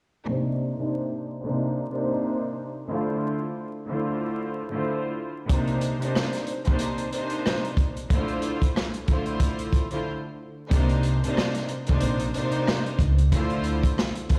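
Boom-bap hip-hop with a reflective, dark mood and a swung feel, cut from a longer piece. It opens on a bowed, reedy string section with a period-style, gut-string tone and smooth top under a filter sweep; a crunchy, gritty breakbeat kit with a tight kick and medium-tuned snare arrives at 5.5 seconds, and after a short break a woody, thumpy pizzicato upright bass joins at 10.7 seconds as the chords move between Cm9 and Dm9. The whole mix sounds as if played on a big sound system in a bare stone room, with vinyl crackle over it.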